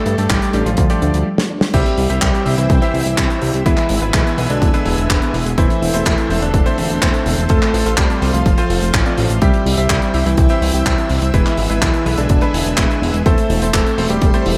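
This italo disco excerpt opens on a suspended chord, with a vintage electric grand piano carrying the melody through a delay, set against lush string machine chords and bright grand piano stabs. A soft, round pluck adds chorused, delayed arpeggios in the background, and its dark tone sits beneath the brilliant, intimate piano stabs. A glossy, detuned synth bass and a dry, damped 70s drum kit with handclaps, hi-hat, snare and crash, treated with gated reverb, arrive almost at once, followed at 0.3 seconds by a punchy, layered electronic kick that drives the straight 4/4 pulse at 125 BPM. A short break from 1.3 seconds, with a drum fill at 1.4 seconds, leads into the main section, where the harmony moves through C, E, Am/E and F. The full string ensemble carries a slow-attack, long-release swell of vintage sampler grit, and the electric piano's clangy low end gives the melody its bite, leaving a nostalgic, bittersweet mood over a light room reverb.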